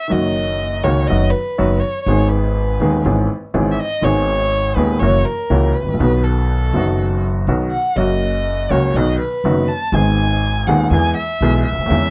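Close, detailed microphones and a light reverb give this short cut from a longer tango an intimate, present sound. The mood is playful and nostalgic, and the 4/4 pulse is treated with a loose, rubato feel. A worn, warm baby grand piano sits up front as accompaniment, moving through chords such as G#m, F#7, B and E. An acoustic upright bass with gut strings is plucked throughout, its woody, dark, thumpy tone anchoring the low end. Over this, a single bowed violin, also up front, takes a solo from 0.1 s to 12.1 s, singing with vibrato, a soft attack and expressive portamento.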